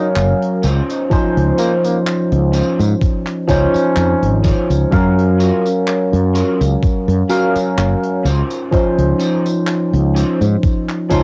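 A barky, overdriven tine electric piano sits up front with lush chorus, 12-bit sampler grit and analog delay, carrying Gbmaj7 and Dbmaj9 chords through this woozy, dreamy vaporwave fragment in Db major at a slow 63 BPM with a light 16th-note swing. A mellow flugelhorn with vibrato plays a brief jazz-style melody in the background until 4.4 seconds, soaked in tape echo, while a round, punchy fretless bass, a twangy, slightly broken-up electric guitar riff with analog chorus, a thumpy sampler-style electronic kick and a natural small-room country kit of handclaps, hi-hat and tambourine fill out the groove. A clean electric guitar fill arrives at 10.6 seconds, and the home cassette recording carries a light reverb.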